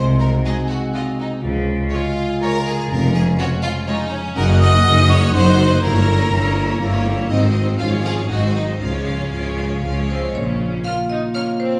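In a straight-feeling 3/4 lilt, this playful, whimsical film cue has a mischievous charm and is cut from a longer piece. A lush, intense symphonic violin section carries the melody from a distance, while a focused chamber violin section, an airy silver concert flute and a clear clarinet in the background weave second lines beneath it. A warm French horn section holds sustained chords, a studio viola section fills in accompaniment, and a very quiet concert harp rings out thumb-plucked arpeggios. The bass is built from a smooth chamber cello section, a close chamber double bass section and a mellow tuba with a soft attack. At 10.1 s the flute and clarinet drop out and a bright, woody marimba with hard mallets enters, close and dry, to take up the melody over the final bars. The orchestra sits further back in a stone room reverb with a touch of studio ambience.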